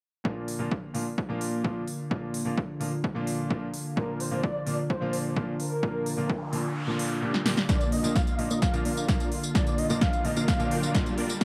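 A punchy, overdriven kick sits up front in this euphoric, anthemic festival progressive house cut alongside a clear grand piano with dub echo and a lush, sidechain-pumped pad, joined at 0.5 s by a big-room kit of crisp hats, snare and tambourine, before a breathy flute-like synth lead enters at 4.0 s, a very quiet noise sweep and riser arrives at 6.3 s shortly before the kick briefly drops out, and a huge detuned supersaw riff under a filter sweep drives the build-up from 7.7 s, within a dark production with light reverb.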